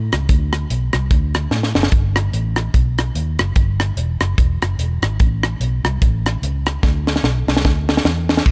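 Soulful and reverent, this short uptempo gospel passage swings its eighths at 147 BPM in 4/4, cut from a longer piece. A vintage fingered electric bass, dark, foam-muted and round through its amp, sits up front beside a tight funk drum kit with bright cymbals, a high-tuned snare, a tight kick and a pumping booth sound, mixing crash, hi-hat, kick, rim click and snare. The drums break into fills at 1.5 seconds and again from 6.8 seconds to the end at 8.5 seconds, all in a dry, close setting.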